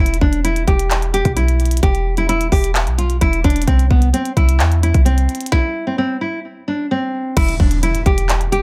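A fingerpicked nylon-string guitar, low-pass filtered and carrying audible finger squeak, opens this dark, menacing half-time trap excerpt over a deep, boomy 808-style sine bass, moving from E minor to C. A tight, clicky electronic kit with overdrive, a tiny snare, hi-hats, handclaps, kick and crash sits up front and joins at 0.1 seconds, and a stop at 5.5 seconds sets up the final section. A very quiet electronic impact lands at 7.5 seconds as the harmony returns to E minor, all within a digital ambience.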